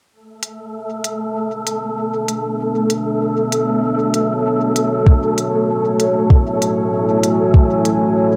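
A crisp electronic hi-hat ticks through this meditative, hazy ambient dub excerpt at 97 BPM in a straight 4/4 in B dorian, joined at 0.6 seconds by a breathy, wind-like tuned noise texture and by a deep, moody pad of detuned sawtooth and sine with a sub octave and chorus that fades in from 1.9 seconds, before a soft, tape-warm kick drum lands up front at 5.1 seconds as the harmony moves from Bm9 to F#m9, all set in a moderate spring reverb.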